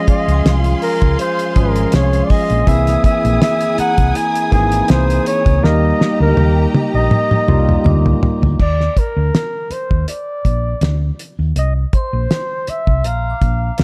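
A breathy flugelhorn with scooped notes carries the melody up front in this romantic, 1970s-style soul excerpt at 81 BPM in Eb major, over bright, barky, overdriven tine electric piano, a lush, distant bowed violin section with portamento and clear French horn chords in the background, which all drop out at 8.6 s after a drum fill from 5.6 s, while the dry, thuddy cloth-damped drum kit, round hollow-body fingered bass and ringing hard-mallet vibraphone continue to the end, with light reverb giving a dark, warm production.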